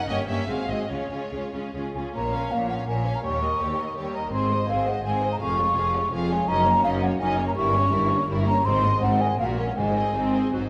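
A mellow, hollow silver flute, close and up front, enters at 2.0 seconds with an airy second line over a lush, vibrato-rich string orchestra in this spirited, cheerful classical excerpt in Db major, moving briskly in 3/4 at around 141-168 BPM. Two violin sections carry the melody and a focused second line, an intense, clear viola section fills the accompaniment, and distant, smooth cellos and double basses anchor the bass as the harmony moves from Gdim7 through Bbm and Eb7 to Ab. Very quiet timpani on medium mallets come in at 8.7 seconds, all set in the wet reverb of a scoring stage.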